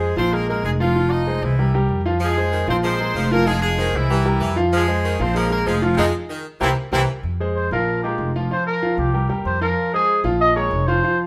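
A moderately reverberant large-studio sound frames this passionate, danceable Latin excerpt in minor, where a brilliant horn section in octave doubling carries the melody over a clear, intimate grand piano with audible action noise and a woody, thumpy pizzicato upright bass, joined at 2.2 seconds by a punchy, close-miked saxophone section on a second line, before a band accent at 6.0 seconds hands the tune to a warm, roomy trumpet solo with scooped notes and vibrato from 7.2 seconds.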